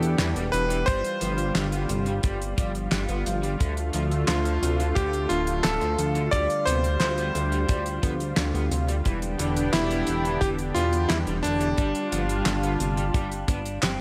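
A bright, cutting electric grand piano leads this nostalgic, cinematic synthwave excerpt at 88 BPM, carrying the melody up front with a clangy, vintage edge, long sustain and tape echo. Beneath it, a thick, warbling unison pad of detuned sawtooths holds sustained chords with chorus and sidechain pumping, while a glossy, up-front synth bass built from pulse and sawtooth waves plucks out the low end, also pumping with sidechain compression. A clean electric guitar picks arpeggios with tape echo in the background, and from 0.2 seconds a dark, lo-fi garage guitar adds a double-tracked overdriven riff with subtle chorus, sitting even further back. The damped 70s kit supplies a fat snare, hi-hat, toms and handclaps in a dry studio sound, joined at 0.9 seconds by a tight kick placed up front, and a drum fill arrives at 13.8 seconds. The harmony moves through Em7, G7sus4, Dm and G7sus4 over D in a straight 4/4, all set in a small room with light reverb.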